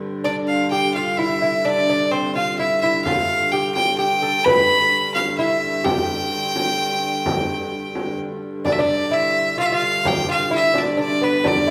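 A dark, woody hurdy-gurdy drone opens this festive, rustic medieval dance in triple time, its keyed, wheel-bowed tone close and airy. Almost at once a single bright, nasal fiddle carries the melody up front with an earthy bite, while an acoustic lute plays a delicate, fingerpicked second line on doubled gut strings, some of them octave-doubled. A vintage, band-limited frame drum joins at 3.1 seconds to add percussion. The band plays live together in one large studio room, and a wet reverb gives the ensemble a generous ring. At 8.7 seconds the tune moves into a new section, and this passage, cut from a longer piece, ends at 11.7 seconds.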